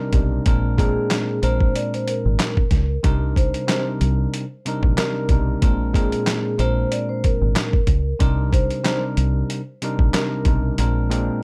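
A swung, gritty boom-bap groove of thumpy kick, medium-tuned snare, handclaps and hi-hat from a compressed, pitched-down sampler-style kit sits up front beneath a round, foam-muted fingered electric bass, while a bell-like, bright tine electric piano comps between Bb7 and Cm7 and a mellow, metallic vibraphone played with soft mallets carries the delayed melody until 10.4 seconds, giving this tough, moody hip-hop fragment, cut from a longer piece, a dark and dry production in which the kick drops out at 10.8 seconds.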